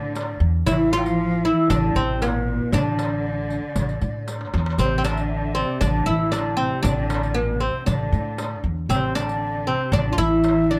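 Arabic maqam ensemble music at 117 BPM in a straight 4/4, melancholic and hypnotic, cut from a longer piece, where an up-front, woody, plectrum-plucked fretless oud leads the melody while a breathy, reedy ney above it and a lush, bowed symphonic cello section below it carry second lines, a thumpy pizzicato upright bass on gut strings anchors the low end, a crisp metal-shell darbuka sits distant in the background with a fill at 4.3 seconds, and a close, dry riq adds bright jingles, all in light reverb.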